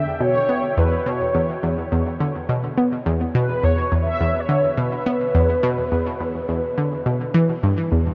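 A steady, straight 4/4 pulse carries this cosmic, hypnotic ambient fragment, cut from a longer piece. An analog pluck drives the riff in the low-to-middle register, sitting bright and up front with a fast attack, short decay and a detuned sawtooth-and-square core edged by a noise layer and ring modulation, then spread by chorus and delay. Above it, a mellow horn-like synth lead carries the melody from a soft attack into sustained, round notes with vibrato and a filter sweep, coloured by ensemble chorus, cassette-tape grit and delay. The lead drops out at 7.6 s, leaving the pluck to ring on alone until 8.1 s. A huge, wet reverb with an 8.1-second decay wraps both parts in a dark, warm production that feels vast.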